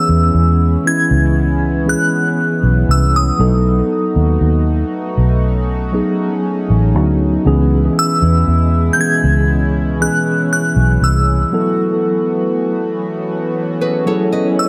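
A glassy FM synth bell opens this slow contemporary R&B excerpt at 59 BPM in C# minor, its crystalline, fast-attack, decaying melody sitting high and treated with chorus and analog delay over a mellow tine electric piano heard through its built-in speakers. A chorused pulse-width pad holds soft-attack sustained chords with a shimmering, retro sheen, while a vintage foam-muted fingered electric bass sits round, punchy and up front, dark and amped beneath the harmony. The chords move from C#m7 to B7 and back before settling on B7sus4, giving the late-night mood a sense of longing. The bass drops out at 11.4 seconds as a break begins, and an electronic swell enters in the background at 13.0 seconds. Just before the end, at 13.8 seconds, a small, fingerpicked nylon-string guitar adds bright arpeggios through analog delay, all within an echo-heavy mix bathed in moderate spring reverb.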